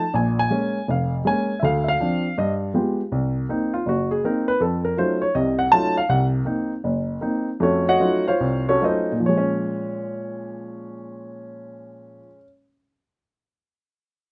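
Jazz in a swinging, smoky mood, this short cut from a longer piece features a lone upright piano with a woody, warm tone that sits up front in the sound. The piano plays solo throughout, ranging from deep bass notes to the upper middle of the keyboard, with a swung eighth-note feel. The harmony moves through rich minor-seventh and altered dominant chords, circling a half-diminished and dominant pairing that returns twice before settling back on the opening minor chord. The tempo slows from 6.1 to 9.2 seconds before the final phrase begins. Close, detailed miking and a dry room keep every note intimate and clear, and the piece ends at 12.4 seconds.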